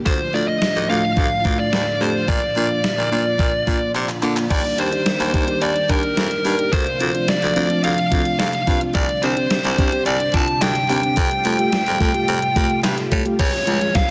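A straight 4/4 synth-pop groove at 108 BPM drives this melancholic excerpt, with an up-front gated 80s digital drum machine's thumpy kick, gated reverb snare, handclaps, hi-hat and crash (filling at 4.0 seconds) under a dark fuzz lead guitar melody with tape echo, a raspy, gritty baritone saxophone bass with vibrato, lush phased string machine chords, a round chorused FM electric piano and a downlifter in the background from 13.5 seconds, all set in a lush hall over chords moving from Dm through Ebmaj7 and Fadd9 to Db.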